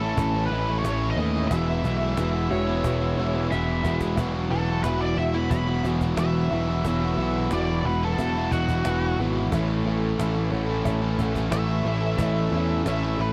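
A snappy cajon and a growly, up-front picked electric bass drive this straight, confident and swaggering classic rock excerpt, with two crunchy overdriven guitars and an overdriven semi-hollow guitar riffing in the background, a shimmering fingerpicked plugged-in twelve-string acoustic guitar and a woody upright piano tucked very quietly beneath, an overdriven slide guitar adding a brief second line from 2.5 to 4.0 seconds, and a dark octave-fuzz lead guitar with wah and distortion taking a solo from 4.2 seconds after a drum fill, in a dry, close 1970s-style studio sound.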